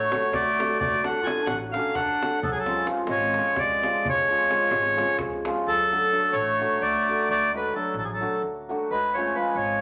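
A fiery, virtuosic Balkan wedding-band groove in a driving, straight 7/8, this excerpt of a longer piece has a reedy, hollow accordion carrying the melody up front with a vintage, band-limited tone, while a distant, warm clarinet plays a classical-style second line. A shimmering, ringing hammered dulcimer supplies accompaniment over a woody, thumpy pizzicato upright bass on gut strings, and a tight davul drives the rhythm until it stops at 5.6 s. The harmony alternates between D and C#, the phrase repeats from 5.7 s, and a moderate large-studio reverb gives the ensemble a roomy sheen.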